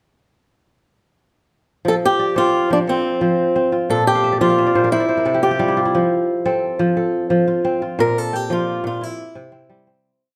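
A ringing, crisp kora opens at 1.8 s with an interlocking arpeggiated ostinato and fast runs, joined almost at once by a boxy, fingerpicked swing-style acoustic guitar playing a motif-based melody of call phrases, both up front in a joyful, flowing West African traditional piece in a straight 12/8, set in a moderate recital-hall reverb, with a kora fill at 4.2 s before a fade-out from 8.0 s.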